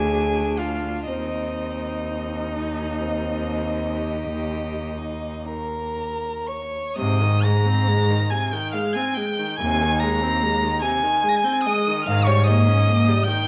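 A bright, up-front bowed cello carries the bass line beneath a close, focused first violin singing the lyrical melody with vibrato, a rich, distant second violin and an intense viola with a smooth top, in this serene, slow romantic string quartet movement in Ab major and 12/8, taken with rubato at 37-51 BPM in dotted quarters, set in a moderate recital hall reverb with a dark production, the cello falling silent at 13.1 s just before the passage ends at 13.5 s.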